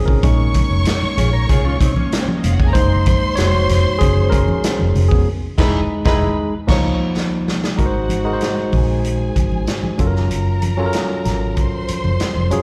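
A straight, unhurried 4/4 groove drives this smooth, lush 1970s-style soul excerpt. A vintage drum kit sits in a small, roomy space with a punchy kick, a medium-tuned snare, hi-hat and dark crash cymbals under a rolled-off top. A foam-muted, fingered electric bass sounds round and amped, while very quiet congas add a thick-skinned pulse. Up front, a bright tine electric piano plays through a combo amp with slapback echo, taking a solo over the opening until 7.8 seconds. A band accent starting at 5.3 seconds runs to that point, capped by a drum fill from 7.2 seconds that leads into the next section. A mellow, clean electric guitar enters at 1.2 seconds with a fingered riff touched by slapback echo, and a distant studio violin section bows a rich second line with expressive vibrato, colored by tape and slapback echo. The band comes across as a live gig heard through the venue's PA, with recital-hall reverb lending a gentle sheen.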